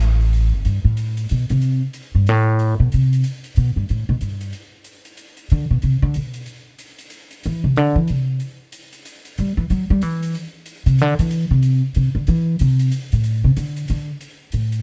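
A dark, dry production frames this cut from a longer cool, spiritual modal jazz piece in A dorian at 186 BPM in a swinging 3/4, where a woody, thumpy pizzicato upright bass sits up front and takes a solo from 0.7 s to 14.8 s while a soft, airy, polished hi-hat with a touch of hall ambience keeps time throughout.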